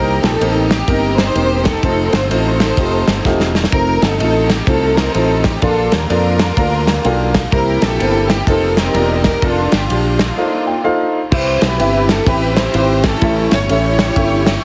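Uptempo gospel at 126 BPM with a jubilant, uplifting swing, where a lush, bowed symphonic string section carries the melody up front over intimate concert grand piano with audible action noise and fills at 6.6, 10.4 and 14.4 seconds, a growly, punchy fingered electric bass, and a tight, mid-forward soul drum kit with crash, ride and a fill at 3.3 seconds, all in light small-room reverb under a heavily compressed radio sound as the harmony settles into C major at 11.3 seconds in this short cut from a longer piece.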